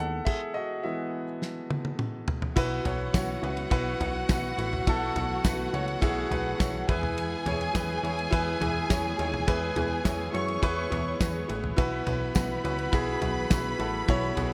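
A straight 4/4 pulse carries this anthemic, uplifting piano-driven pop passage, cut from a longer piece and dressed in bright 1980s-style digital production with light reverb and a small-room ambience. A clear grand piano sits up front as the accompaniment from the start, its natural long sustain and audible action noise giving it an intimate feel. Beneath it, a very quiet studio string section holds smooth sustained chords with vibrato and portamento, while a plucky analog bass adds punchy, funky notes with a fast attack and a decaying tail. A damped 70s drum kit, dry and fat-snared with dark cymbals and gated reverb, comes in at 0.3 seconds and plays a fill from 1.4 seconds, leading into the move from E to Bsus4 at 2.6 seconds. At 2.6 seconds a lush violin section with digital delay enters as a second line, and from 3.1 seconds a jingly tambourine sits close and dry in the background.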